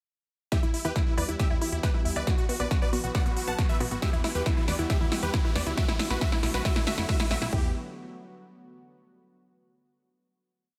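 Lightly reverberant and tape-warm, this bittersweet, soaring uplifting trance piece builds from 0.5 seconds, with a punchy four-on-the-floor electronic kick up front, crisp hats and a punchy snare from a big-room dance kit, and a galloping sixteenth-note analog bass. Huge, bright supersaw chords carry a repeating riff melody in thirds and sixths, joined by a warbling, vintage unison pluck on a second line, a lush chorused pad holding sustained chords, and an arpeggiated pluck under a filter sweep, all pumping with the sidechain. An electronic riser enters at 1.9 seconds to drive the build, and a final chord rings out from 7.5 seconds.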